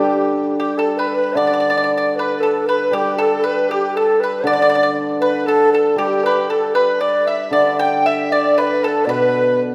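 Set in a loose, rubato 2/4, this short cut from a longer piece of Chinese traditional chamber music carries a pastoral yet festive air. The xiao holds the melody, its end-blown bamboo tone airy with vibrato and a crisp attack, though it sits distant, in the background. Alongside it, a large bamboo dizi adds a second line, pure and bright with a buzzing membrane, tongued notes, vibrato and an unsteady quality. The pipa shares that second line in the same register, played with fingerpicks for a dry, percussive edge. Up front, the hammered dulcimer supplies a lower, shimmering and ringing accompaniment, while a lush concert hall reverb surrounds the ensemble, which moves into a new section at 1.4 seconds and runs to 9.7 seconds.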